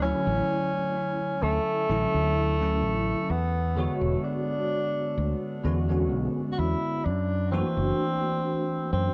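A dark, cassette-worn mix with light small-room reverb frames this woozy, nostalgic vaporwave fragment, cut from a longer piece with a slight swing. A roomy tenor saxophone carries the jazz-style solo melody with a warm subtone and scooped notes, trailed by tape echo. Beneath it, a bright, bell-like tine electric piano washed in ensemble chorus and analog delay moves through Dmaj7, E13 at 3.3 seconds and F#7alt at 7.1 seconds, while a warm, up-front fingered electric bass anchors the low end.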